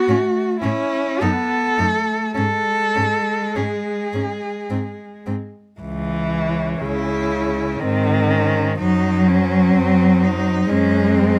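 A warm, bowed solo cello carries the melody up front with expressive vibrato and gliding portamento in this melancholic, solemn classical piece for cello ensemble, set in C# minor at a slow, rubato 50-65 BPM in 3/4, while a focused, close cello plays the accompaniment, a soft-attacked second cello adds a sliding counter-line, and a smooth, even bass cello anchors the low end, these three rich-toned and all bathed in light reverb as the music moves from its opening section into a second at 5.8 seconds.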